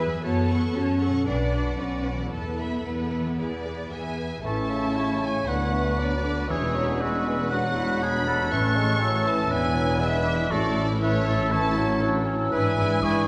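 A lush string body opens this urgent, restless classical excerpt at 118 BPM in A major: a violin section carries the melody with rich, expressive vibrato while a second, more focused violin line sits in the background. Underneath, a very quiet, even viola section, deep bowed double basses and a dark cello section with portamento, entering at 0.2 seconds, drive the fast, dramatic romantic movement with a rubato feel, as a very quiet concert harp adds ringing, fingerpicked arpeggios. At 4.4 seconds the woodwinds and brass join: a pure, hollow silver flute high above the strings, a warm solo oboe and a clear, very quiet clarinet trace second lines, and a bassoon fills in accompaniment. A mellow, tight French horn section holds soft-attack sustained chords in the background. The harmony moves from F#m and Bm through E13 and E7 before landing on A and ending on E7/G#, all bathed in a wet scoring-stage reverb that gives the violins and flute a distant quality.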